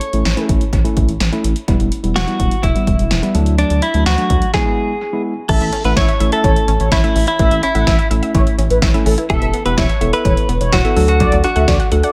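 A straight, punchy analog drum-machine beat drives this nostalgic, wistful synth-pop fragment, joined by a rubbery square bass, a worn, slightly out-of-tune tine electric piano and an up-front, clean guitar melody carried on analog delay, and after a brief stop at 4.5 seconds a round, chorused synth brass line and lush, detuned unison-pluck arpeggios in the background enter at 5.5 seconds, in an echo-heavy mix with light reverb.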